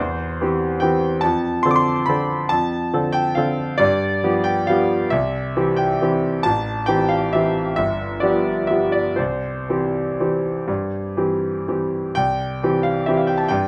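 Graceful and elegant, this classical piano waltz in 3/4 moves with a flexible rubato between 116 and 148 BPM in C major, tuned to A4 = 436 Hz. A solo concert grand carries the whole 13.7 seconds, its brilliant, up-front tone spanning a deep bass down to G1 and reaching up to D6. The harmony moves through C/E, Dm7/F, G7, C, Am7 and G7 before resolving on C at 9.2 seconds, all set in a moderate studio reverb with a gently rolled-off top end, as a passage cut from a longer piece.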